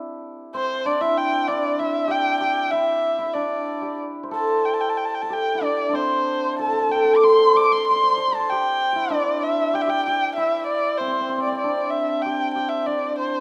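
This graceful, pastoral excerpt of Chinese traditional chamber music, in the G zhi mode at a free, rubato 95 BPM, opens with a shimmering, ringing hammered dulcimer playing a second line before a single erhu enters at 0.6 seconds with a dark, woody, bowed melody full of vibrato and portamento, both instruments up front in a moderate recital-hall reverb.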